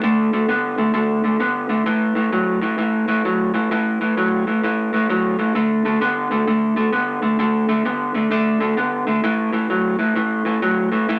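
Soulful and smoky, this short blues excerpt swings its eighth notes at 130 BPM in 4/4, with a lone electric guitar played through a small old amp carrying the whole passage from 0.0 to 11.2 seconds. The fingered guitar sits up front with a slightly broken-up, lo-fi, compressed tone, moving between D5 and A5 power chords in the low-to-middle register. Moderate studio reverb gives the sound a modest sense of space, and the music is cut from a longer piece.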